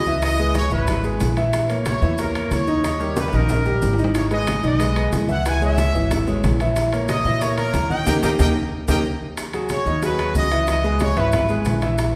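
A bright, tight trumpet section carries the melody over a woody pizzicato upright bass and a clear, up-front concert grand piano in this fiery, danceable salsa excerpt in G# minor at 184 BPM, where ringing metal-shell timbales, low-tuned congas, high-tuned bongos and grainy maracas sit back in a wet recital-hall reverb, with drum fills at 3.2 and 8.1 seconds, the latter joined by a band accent.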